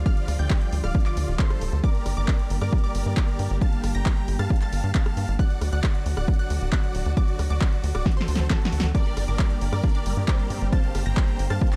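Dark, warm digital ambience wraps this excerpt of emotional, bittersweet uplifting trance in G minor, moving at 135 BPM in a straight 4/4. An overdriven, punchy electronic kick sits up front with a tight, nasal sequencer bass built from sawtooth and square waves, the bass pulsing under sidechain pumping, while a dry analog drum machine adds handclaps, hi-hat, rim click and a punchy, overdriven snare in a small room. Above them a huge, euphoric supersaw lead carries the melody with delay, shadowed by a lush, wave-folded unison pluck in the background and a smooth, bowed studio string section holding sustained chords with vibrato. The harmony moves from Dm to Gm and then D, and a drum fill at 8.1 seconds sets up the return to Gm at 8.9 seconds. At that point a biting symphonic violin section and a squelchy, resonant acid bass with phaser, chorus and delay join in the background, the bass spinning arpeggios within the texture.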